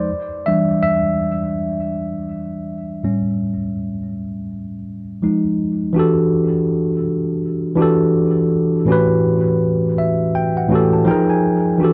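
A mellow tine electric piano carries this short hip hop excerpt on its own, its worn, slightly out-of-tune tone sitting up front and direct, colored by cassette tape, a low-pass filter and tape echo. The mood is hazy and nostalgic, moving at 82 BPM in 4/4 with a 16th-note swing in E dorian. The piano ranges from A2 to A5, playing a solo passage through the first 6.0 seconds over Em7, A7 and Fm7, then shifting to richer Em11, A13 and Fm11 voicings in the second section. A fill from 9.6 to 11.8 seconds closes out the clip, which is cut from a longer piece. A moderate small room reverb and a dark, warm production give the sound a close, faded intimacy.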